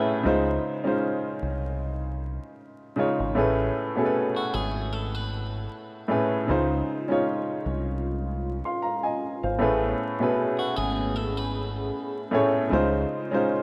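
Mellow and nostalgic, this lo-fi hip hop excerpt at 77 BPM in Db major sets a woody, vintage upright piano with cassette-tape character up front over a round, punchy fingered electric bass, while a bright, picked clean electric guitar with tape echo adds a soft-level second line and a hollow, flute-like pad with chorus enters at 6.5 seconds to hold sustained chords, the harmony drifting between Dbmaj7 and Amaj9 inside a lush hall reverb with vinyl crackle and a rough home-demo mix.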